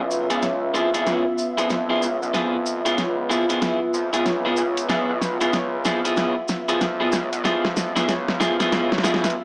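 A nasal, distorted sawtooth synth bass and a warbling, nostalgic lo-fi pad with chorus open this playful, gritty glitch hop excerpt at 94 BPM with a swung 16th feel, soon joined by a grainy cabasa, slightly broken-up electric guitar stabs with analog delay, and a layered dubstep kit with a huge snare and bright hats, all building over a C#7#9 chord through a continuous drum fill in a dry, small-speaker hardware recording with moderate plate reverb.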